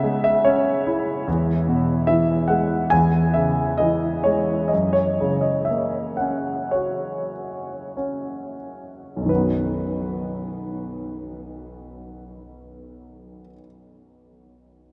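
A clear, worn concert grand piano plays alone from 0.0 to 14.9 seconds in this calm, peaceful classical fragment in B major. Cut from a longer piece, it moves at a rubato 44-74 BPM in 4/4, tuned to A4 = 438 Hz. The piano sits up front with deep bass and short sustain inside a huge, wet reverb that suggests a vast, echoing space. It moves through C#m, E and F# while slowing from 1.3 to 9.3 seconds, then settles onto B as a new section begins at 9.3 seconds.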